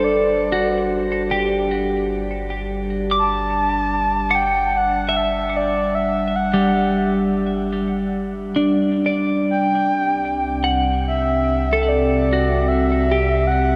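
A warbly, tape-like pad and a deep, rumbling drone fade in beneath a breathy, flute-like synth lead with shimmering echoes and a bright, twangy twelve-string electric guitar picking arpeggios, set in a dark, cavernous cathedral space in this peaceful, weightless ambient passage cut from a longer piece, as the harmony moves from G5 to C at 9.5 seconds.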